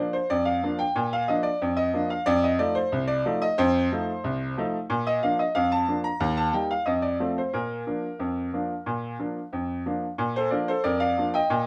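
A solo grand piano opens this playful, lively ragtime excerpt, its bright, brilliant, worn and open tone sitting up front and ranging from deep bass up into the high treble. At 91 BPM in a straight 2/4 and in B-flat major, tuned a touch sharp at A4 = 445 Hz, it moves from Bb to F7 and back, then through Eb and F home to Bb. Light reverb surrounds the short passage before it repeats its opening strain at 10.2 seconds.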